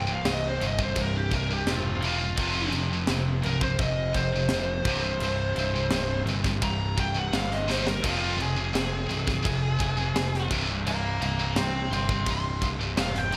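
A dark, up-front high-gain lead guitar solo opens this heavy, epic metal excerpt at 85 BPM in 4/4, playing over a double-tracked, compressed distorted electric guitar in the background, a heavy high-gain guitar riff, a very quiet scooped high-gain guitar and a growling, overdriven picked electric bass, while a tight metal drum kit with a high-tuned snare and gated reverb enters at 0.3 s and plays a brief fill at 7.7 s, as the harmony moves from C5 to F5 and Fm in a bright 1980s-style digital production with light studio reverb.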